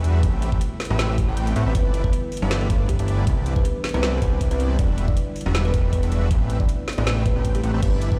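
A fat, nasal analog bass sits up front in this lush, playful future bass excerpt, its detuned sawtooth and square-wave tone opening with a fast filter pluck and pumping against the sidechain. Beside it, a layered, knocking electronic kick with a tape-warm edge drives a half-time feel with a light swing, dropping out briefly from 1.4 to 1.8 seconds. A trap kit adds a woody snare, metallic hi-hats and crash cymbal, while a huge, compressed supersaw riff with vibrato and a cassette-tape colour pumps above, and a very quiet, breathy pad holds mellow chords underneath. At 1.8 seconds a short, thumb-plucked kalimba enters with the melody, bringing a woody, solid-board tone over the progression of Am9, G6, Cmaj9 and Em9. The whole mix sounds as if it's played on a big sound system in a bare room, with large studio reverb around the drums.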